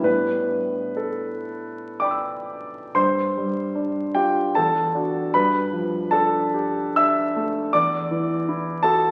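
A concert grand piano opens this short excerpt from a longer classical work in an impressionist vein, its tone natural and up front with a deep bass that reaches down into the low register. Playing alone in a rubato 3/4 that drifts between roughly 56 and 81 BPM, the instrument casts a mysterious, nocturnal mood through suspended and extended harmonies, beginning on an A9sus4. Around 3.0 seconds the music moves into a new passage, passing through G7sus4 and Esus2 before settling on a G9 and finally an E7sus2 near 7.7 seconds. The piano sounds as if heard in a concert hall with a long, wet reverb tail that lets each chord hang in the air. Over it all lies the vinyl crackle of a very old 78 rpm record, lending the warm piano tone a faded, antique patina.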